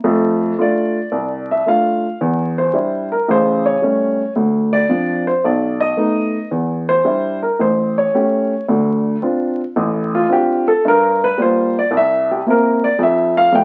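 Up front and woody, a lone upright piano opens this smoky, cool excerpt of solo jazz in D minor at 111 BPM, swinging through minor-key changes from F6 into Em7b5, A7 and Dm7 before settling on Fmaj9 at 13.0 seconds, all heard through moderate studio reverb and the crackle of a very old 78 rpm record.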